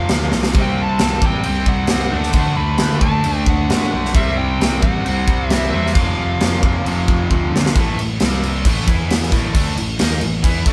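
Hard rock with a powerful, energetic drive, this short excerpt from a longer piece sounds like a band playing live together in one room with light reverb. A bluesy lead guitar carries the melody over the first 7.3 seconds, its tone distorted, while a bright, tight distorted guitar and a crunchy overdriven rhythm guitar set in the background both hammer out riffs across the whole clip. A second crunchy guitar, double-tracked and colored by a phaser, adds another riff from 0.5 to 7.7 seconds. Underneath, a growly, punchy overdriven picked bass anchors the low end, and an airy, polished, up-front metal drum kit with bright cymbals, a medium-tuned snare and a tight kick drives the band, marking drum fills near the start and again just before the shift to a new section at 7.7 seconds. The chords move from F and C power chords through D and C before the closing part cycles among A, C and E.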